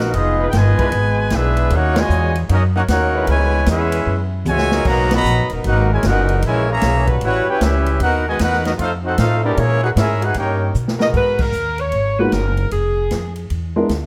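Light reverb and a natural studio room frame this sultry big band swing fragment in G# minor, moving at 153 BPM in 4/4 with a 65% swing on the eighth notes. A bright, close-miked trumpet section carries the melody with vibrato. It is backed by a distant, roomy trombone section with a brilliant edge on the second line, while another trombone section holds soft-attack chords in the background. A woody, growly pizzicato upright bass sits up front, and the acoustic drum kit adds a punchy kick, medium-tuned snare, hi-hat, ride, crash and toms, with band accents and short drum fills along the way. Near 11.0 seconds the horns hand over to a tight saxophone section with a smooth top and warm vibrato. An intimate upright piano then enters at 12.2 seconds, its action noise audible, as the harmony moves from rich minor-ninth and altered dominant chords toward a closing E7#11.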